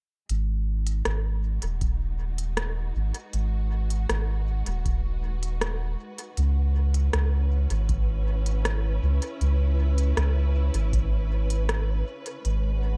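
A straight 4/4 pulse at 79 BPM carries this hazy, deep ambient dub passage in G# minor, cut from a longer piece. A soft, round sub bass sits up front, its mellow, sustained tone moving between D#1 and C#2 from 0.3 seconds onward. An organic electronic drum kit adds smooth hi-hats and rim clicks with a tape-warm character, set back in a large room and trailed by dub echo, while a dry, analog electronic kick thuds in the background from 1.8 to 11.1 seconds. Behind them, a lush bowed string section holds sustained chords with vibrato, sounding distant yet focused as it fades in across the passage. The harmony shifts from G#m7 to C#m7 and back to G#m7, and the mix stays close with little reverb overall.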